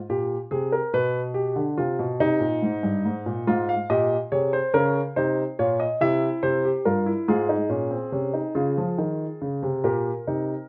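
Moving in a straight 6/8 at 47 BPM counted in dotted quarters, this contemplative yet driving baroque-style three-part fugue in F minor, cut from a longer piece, features a solo dark concert grand piano with a mellow, deep-bassed, up-front tone spanning G2 to F5, set in light reverb and tuned to A4 = 444 Hz, its harmony passing through G7/B, C7 and Fm/Ab before turning toward Db at 8.5 seconds.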